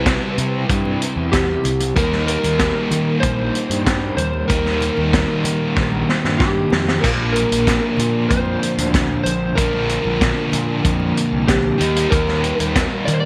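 Awash in studio reverb, this hypnotic, kaleidoscopic psychedelic rock excerpt at 94 BPM sets a slightly broken-up slide guitar melody fed through tape echo over a double-tracked, overdriven electric guitar riff with tremolo and a round, fuzz-soaked fingered bass, while a punchy, up-front vintage drum kit with a high-tuned snare and dark cymbals plays a fill at 5.8 seconds, a very quiet, piping tonewheel organ with key click and slow rotary speaker holds sustained chords, and faint, ringing congas add percussion across a Cmaj7, Eb and Bbmaj7 progression.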